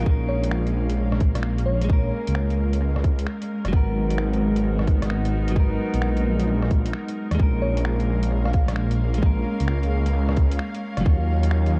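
Nocturnal and ghostly, this swung future garage excerpt pairs a menacing, detuned saw bass and a tight, up-front electronic kick with clean picked electric guitar, a clear bowed string section holding sustained chords, and a muffled, pitched-down sampler kit of finger snaps, hi-hat and rim click, all pulsing under sidechain pumping on the bass, strings and guitar. A sparkling bell-like FM electric piano drifts in the background at 0.3 and 7.6 seconds over a Bbm7, Abm9, Bbm7 and Ebm9 progression, and the echo-heavy mix carries a cassette tape character and a faint mains hum.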